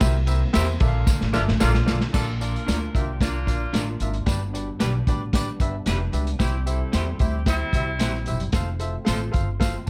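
Joyful and danceable, this excerpt of uptempo 1960s-style soul moves at 112 BPM in a straight 4/4, opening on a C7 to Bbmaj7 change before a drum fill at 1.1 seconds leads into a new section that steps through Bb, G, C and F. Up front, a lo-fi, muffled vintage drum kit with a punchy kick and rolled-off top sits beside a woody, dark pizzicato upright bass, while a clear, polished upright piano plays accompaniment and a fat, lightly overdriven tonewheel organ holds very quiet sustained chords through a slow rotary speaker. A jingly tambourine and bright, twangy electric guitar stabs with spring reverb sit in the background, and a tight, vintage saxophone section adds a second line with analog delay from 1.3 to 8.2 seconds.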